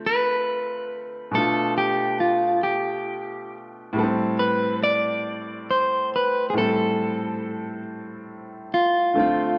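A bright concert grand piano opens this late-night, yearning R&B excerpt in a slow 6/8, its brilliant accompaniment and deep bass up front under a clean, fingered electric guitar melody bathed in spring reverb, both sounding live together in a stone room as the harmony moves from Dm7 through Bm7b5 to Am7 at 3.9 seconds.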